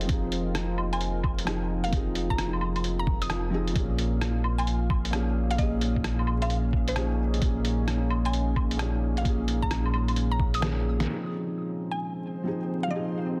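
A dense, heavily limited modern master with vinyl crackle, light reverb and a digital ambience frames this melancholic, nocturnal future garage excerpt in F minor, moving at 131 BPM with a 65% swing on the sixteenths. A felt-muted upright piano, soft and intimate with its action noise audible, plays the accompaniment under a deep, moody sawtooth pad with chorus and slow-attack sustained chords, while a round sine sub bass sits up front; all three pump against the sidechain, and the piano also carries an analog delay. The drums come from a muffled, pitched-down, sampler-style kit re-recorded in a large room, with claves, hi-hat, rim click and a medium-tuned snare that is low-pass filtered and soft-clipped, plus a thumpy electronic kick. From 0.9 seconds a woody, bright FM pluck with a noise layer, chorus and analog delay carries the melody over the chords Fm7 and Bbm7. A drum fill from 10.6 seconds and a band accent at 11.0 seconds close the first section, after which the bass and drums stop, and a reversed, dreamy granular texture swells in from 12.2 seconds as the harmony returns to Fm7.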